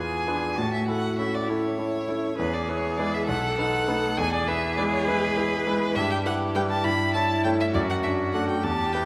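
A wet, resonant hall surrounds this short cut from a longer piece, a quick classical-period movement for piano trio in a straight 6/8 at 67 dotted-quarter beats per minute. The mood is spirited and cheerful, with the harmony passing through E and B7 before settling into D major from 6.0 seconds. Up front, a single bowed violin carries the melody between B4 and B5 with a smooth, even tone and vibrato. Beneath it, one cello sings a second line from E4 to A4, its soft attacks, portamento and expressive vibrato giving it a rich, singing quality. The grand piano supplies a bright, brilliant accompaniment spanning B1 to D5, sitting forward with a natural sound as all three play together through to 9.1 seconds.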